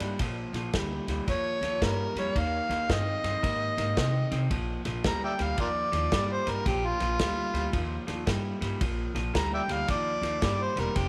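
Gritty and laid-back, this swinging electric blues shuffle is cut from a longer piece and features an overdriven, amplified harmonica up front, soloing throughout in a jazz style with light vibrato, scooped notes and tongue slaps. Beneath it, an electric guitar through a small old amp picks a dark, slightly broken-up, compressed lo-fi riff, while a woody, thumpy upright bass with gut strings is plucked pizzicato. A natural country drum kit in a small room adds a punchy kick, a medium-tuned snare and dark ride cymbal, all under light reverb.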